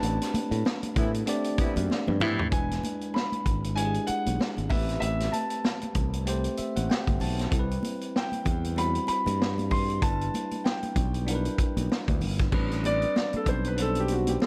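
A swung sixteenth-note feel at 96 BPM in 4/4 drives this smooth, bittersweet excerpt of lush 1970s-style soul in A dorian, where a vintage drum kit with a punchy kick and a rolled-off top and a growly, bright fingered electric bass sit up front, very quiet damped high-tuned congas add color, a bell-like tine electric piano accompanies and adds a brief fill, soft-attack jazz horn stabs with light vibrato and octave doubling sound in the background from 1.0 to 2.4 seconds alongside a drum fill, and a warm, open concert grand piano with deep bass carries the melody before taking a short solo at 12.5 seconds, all set in light reverb and a dark production.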